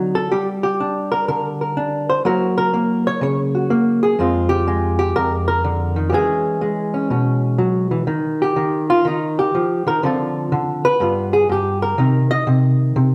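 A clean, dark hollow-body electric jazz guitar plays alone from the first moment, fingered and compressed, sitting up front in a stone room with a wet reverb and the feel of a live take. This relaxed solo jazz excerpt swings its eighths at 123 BPM in 4/4, moving through chords such as Gm, Gb7, Fmadd9 and E69 across a range from F2 to Eb5. At 8.1 seconds the guitar shifts into a new section, running through Eb, Dm7, G7 and Cm7 until the cut at 13.1 seconds.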